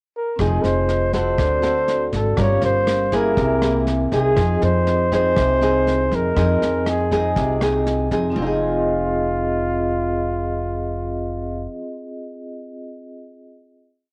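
A flugelhorn with light vibrato and scooped notes carries a motif-based solo melody up front in this intimate, melancholic bossa nova piece, over fingerpicked nylon-string guitar with audible finger squeak, a ringing metallic vibraphone holding dark chords with motor vibrato, woody pizzicato upright bass on dotted roots and fifths, and a brushed drum kit with a rolled-off top that stops at 8.2 seconds, all coloured by a cassette home-recording sound and light reverb before the vibraphone rings out last to 14.1 seconds.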